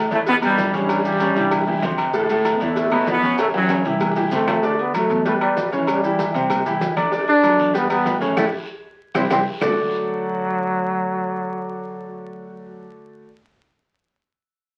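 Salsa with a sunny, festive mood, this short excerpt sets a bright, open grand piano up front over a woody, thumpy pizzicato upright bass, while a brilliant, tight trombone section carries the melody until 4.2 seconds and a clear, punchy solo trombone with vibrato takes over at 4.3 seconds, all above a background bed of damped low congas, high-tuned cowbell and bongos, ringing agogo bells and timbales, woody claves, raspy guiro and grainy maracas, with drum fills and a band accent adding lift and the whole thing heard through studio reverb and the crackle of a very old 78 rpm record.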